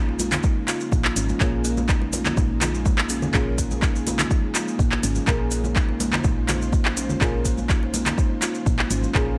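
A straight 4/4 groove at 124 BPM drives this afro house piece, anchored by an overdriven electronic kick that sits up front with a deep, layered punch and a large-room character. A deep house drum kit enters at 0.2 s, just ahead of the kick, with handclaps and metallic hi-hats, also overdriven and forward in the mix, while hard-hand congas ring in the background and grainy maracas add a mellow, live-room shimmer. Underneath, a round, woody FM bass with a fast attack and dark decay pumps against the kick, holding the low end on a single Bbm7 harmony in Bb minor. A hollow, thumb-plucked kalimba spins arpeggios roughened by vintage 12-bit sampler grit and dub echo, and soft, wave-folded chord stabs, treated with chorus, phaser and dub echo, punctuate the groove. An ethereal, detuned pad with a slow attack and ensemble chorus breathes its sustained chords in the background, giving this hypnotic, driving fragment of a longer track its floating haze.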